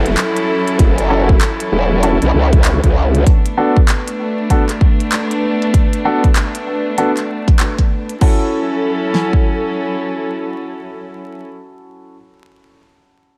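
Dry and dusted with vinyl crackle, this funky, playful glitch hop excerpt opens on intimate, bowed chamber strings with gritty sampler texture, sidechain pumping and a low-pass filter holding sustained chords, while a growling, saturated wobble bass and a very quiet downlifter both stop by 3.3 s; a glitchy kit of clicky hats, handclaps, rim clicks and crash sounds from a large room beside a punchy pop kit with a fat snare, and from 1.1 s a warm grand piano adds stabs through digital delay.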